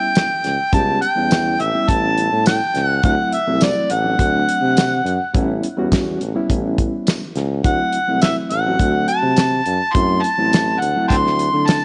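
This is a straight-eighth soul blues excerpt with a soulful, laid-back mood, built on a short cycle that moves between A9 and D9 chords. An overdriven harmonica carries the melody up front, its amplified, gritty tone shaded with vibrato, tongue slaps and scooped notes in a jazz-inflected style. Beneath it, a reedy electric piano supplies warm accompaniment from the start, lightly overdriven and pulsing with fast tremolo as if heard through its built-in speakers. A damped 70s acoustic drum kit enters at 0.2 seconds, dry and up front, with a fat snare, tight kick, hi-hat and tambourine. A clear, punchy tuba takes the bass line from 0.4 seconds, sitting present in the mix with a pop sensibility. Light studio reverb gives the whole a compact, intimate room sound.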